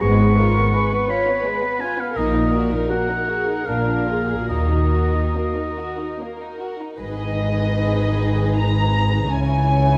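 Yearning and melancholic, this slow romantic movement for symphony orchestra moves in 3/4 with a rubato feel, and it is cut from a longer piece. A dark, woody violin section carries the melody, bowed sul tasto with vibrato, sounding distant and lush. A solo oboe with light vibrato and a vintage, classical color sings a second line above until 6.2 s, while another violin section traces a lower second line that is pure and floating. Violas, intimate and close with light vibrato and soft attacks, fill out the accompaniment, and cellos and double basses, also bowed sul tasto, anchor the bass, with the basses sitting up front. The harmony passes from a diminished chord through minor chords and a dominant seventh, then at 7.0 s a new section turns toward G#m and C#m, all framed by moderate scoring-stage reverb in a dusky, warm production.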